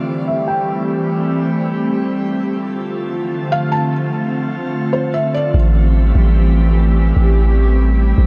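Set in light reverb and digital ambience, this short, melancholic and spacious hip hop fragment moves with a half-time feel as a glassy, warbling FM pad holds up-front chords through ensemble chorus and a low-pass filter, shifting from Am7 to Dm7 and back. A felt-muted upright piano adds soft, intimate melody fragments at 0.3 seconds and again from 3.5 seconds, dimmed by a low-pass filter and trailed by digital delay. At 5.5 seconds a deep, sine-like 808-style bass enters on a single long, decaying note that sits prominently beneath the pad.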